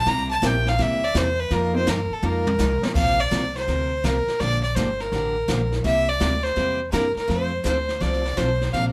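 Western swing country, swinging and down-home, cut from a longer piece, with an up-front, clear bowed fiddle carrying the melody as a solo over the first 3.0 seconds while a woody upright piano sits in the background and drops out at 2.9 seconds. A thumpy pizzicato upright bass on gut strings anchors the low end while a bright, full-bodied picked jumbo acoustic guitar fills out the accompaniment, and a distant, roomy brush kit with dark cymbals and a boomy kick plays a fill from 2.2 to 3.0 seconds leading into the second section. Light reverb gives the small band a gentle sense of space as the chords move from C7 and F7sus4 through Gm7 to a closing F.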